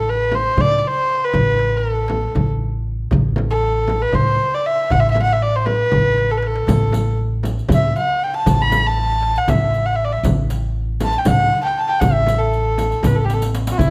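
In a straight 7/8 at 236 BPM counted in eighths, this longing, hypnotic Turkish makam ensemble piece in A huseyni features a nasal, earthy bowed kamancheh up front carrying the melody with light vibrato and portamento, over a thumpy pizzicato gut-string upright bass, a crisp metal-shell darbuka in the background and a deep frame drum played with hard hands, with a drum fill at 6.2 s before a riq with dark jingles joins at 6.7 s and a bright, plectrum-plucked fretless oud slips in very quietly at 13.8 s, all set in a moderate recital hall reverb.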